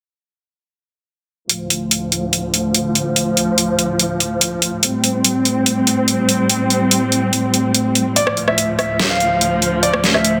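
Heavy and chaotic, this cut from a longer heavy wobble dubstep track moves in a half-time feel, with a dark, lush bowed string section holding low sustained chords from 1.5 seconds under a low-pass filter sweep, its woody tone shaded by vibrato. An overdriven, layered electronic drum kit sits up front with a deep snare, rim clicks and bright hi-hats in a small room ambience, while a natural-sounding baby grand piano with short sustain and delay adds a brief high melody from 8.2 seconds. A wet plate reverb wraps the dense, heavily limited modern master over a Dm, Am7, Dm progression.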